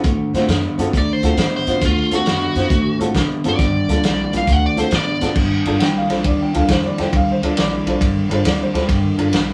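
A biting overdriven guitar sings a mournful, soulful melody from 1.0 to 5.4 seconds over a 136 BPM electric blues shuffle in swung 4/4, backed by a dark, slightly broken-up electric guitar riff, a woody, thumpy upright bass, a muffled, lo-fi vintage drum kit with crash, ride, hi-hat, punchy kick and snare, and a boxy upright piano, all captured live in a small room with moderate reverb as the chords move from D7#9 to Gm7 in this short cut from a longer piece.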